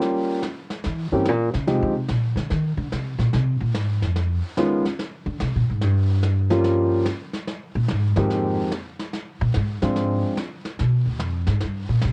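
Jazz piano trio in a smoky, cool swing, cut from a longer piece, with an upright bass solo running throughout: the pizzicato bass, woody and up front, enters at 0.9 seconds over brushed snare drum in a natural studio room. An intimate concert grand with audible action noise and deep lows plays melody from the start, drops out, and returns from 4.6 to 10.3 seconds over dominant ninth and minor seven flat five harmony. Light reverb and worn, warbling cassette tape with pitch drift colour the sound.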